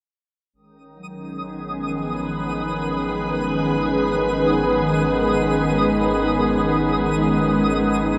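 Serene and peaceful, this ambient excerpt floats in free time over a G# minor chord, set in a vast, echoing space with a dark, softened top end. A round analog bass fades in at 0.5 seconds on a deep, evolving low note, and a twinkling granular texture arrives just after, sparkling high above with an octave-up shimmer. From 1.0 seconds a vibraphone played with soft mallets traces quiet arpeggios, its mellow, ringing tone heard close and dry. An organ-like drone sits in the background with a detuned, chorused sheen, while a pure, sine-like organ pad holds sustained chords up front, its slow attack and long release giving the music its calm, steady breath. Long reverb tails let the sounds linger and blur together until the fragment ends at 8.2 seconds.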